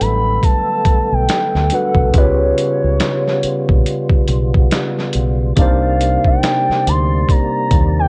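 Relaxed and soulful, this short cut from a longer R&B and neo-soul piece moves at an unhurried 70 BPM in 4/4 with a swung sixteenth-note feel. A gritty, pitched-down boom bap sampler-style kit sits up front with a thumpy kick, a medium-tuned snare, hi-hat and finger snaps, compressed and re-recorded in a small room, stopping just before the other parts at 7.9 seconds. A deep dub fingered electric bass, dark and round with transformer saturation, holds the low end prominently, while a bright, barky tine electric piano supplies clean accompaniment. A fat tonewheel organ sustains chords with third-harmonic percussion, key click, chorus vibrato and a slow rotary speaker, and above it a smooth sine-toned lead glides between notes with portamento, vibrato and chorus in a mellow upper register. The harmony shifts from Gmaj9 to Db7#11 at 2.1 seconds and settles on Cm9, and the dry, intimate sound carries a cassette tape character on the drums, electric piano, organ and lead.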